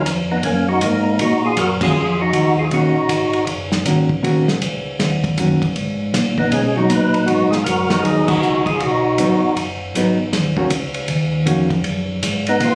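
Swinging in 4/4, this soulful, smoky soul jazz organ trio excerpt, captured on a phone in a club-like room, sets a fat, lightly overdriven tonewheel organ melody with percussive attack, key click and slow rotary speaker in phrases returning at 6.4 and 12.5 seconds, over a mellow, round organ bass, a dry, up-front soul drum kit with a tight kick, and a clean hollow-body jazz guitar accompanying from 1.8 seconds, punctuated by band accents.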